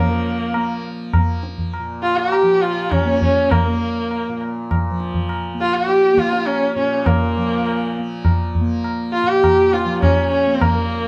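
A clear, focused sarangi leads this solemn, introspective Hindustani excerpt, its bowed line gliding with light vibrato and sympathetic-string resonance, sitting up front yet bathed in plate reverb. Beneath it a softly plucked, buzzing tanpura drone shimmers throughout, and a low-tuned tabla with a short ring enters at 0.5 s to mark the straight triple metre. A very quiet, bell-like celesta traces a delicate second line above, all held in a dark studio sound with moderate room reverb.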